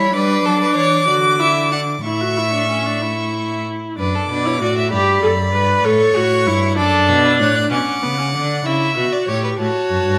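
Contemplative and solemn, this baroque-style fugue for string quartet in D major moves at 64 BPM in a straight 6/8, with a bowed violin singing the high melody with vibrato and expressive portamento from a distance, a second violin holding a smooth, even inner line, an up-front viola adding expressive, gliding accompaniment, and a close cello anchoring the bass, all four playing throughout this 10.2-second fragment in a reverberant recital hall as the harmony drifts from Em7 toward a closing F#m.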